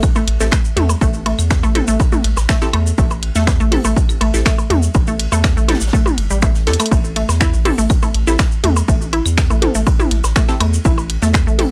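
A punchy, tape-warm electronic kick drives this sparse, hypnotic minimal techno excerpt at 122 BPM in A minor, sitting up front beside a round, deep analog bass with sidechain pumping, while a garage kit of finger snaps and bright hats, delayed electronic claves, blips and toms, a grainy tube shaker and a background brushed jazz kit with a high-tuned snare fill out the groove, a squelchy, resonant blip pluck riff with chorus and delay and a muted, phased dub chord stab on Am7 ride above, a drum fill lands at 6.7 seconds, and the whole has a dry, gritty hardware sound with light reverb.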